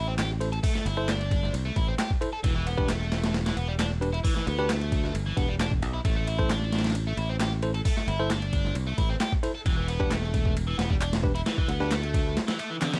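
Gritty, overdriven sampler-style drums with a thumpy kick, medium-tuned snare, hi-hat and ride cymbal, joined by dry analog handclaps also pushed into overdrive, drive a funky, energetic breakbeat at 133 BPM in A minor, where a growly, punchy fingered electric bass sits up front beneath a biting, double-tracked picked guitar riff with delay and clean, bell-like tine electric piano stabs echoing through their own delay, moving between Am and Em7 over light reverb and a layer of vinyl crackle in this short cut from a longer piece.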